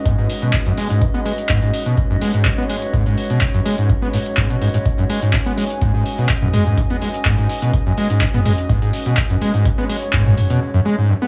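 A squelchy, overdriven acid bass sits up front in this hypnotic, trippy acid house clip, its gritty, resonant sawtooth riff carrying a filter sweep, analog chorus and tape echo. An analog drum machine adds handclaps, metallic hi-hats and toms over a deep electronic kick, while a grainy egg shaker with tape echo ticks away in the background. Beneath them, a warbling, lo-fi tape-like pad holds dark, detuned sustained chords and an airy, breathy pad adds soft texture, both pumping with sidechain in an echo-heavy mix touched with light digital reverb.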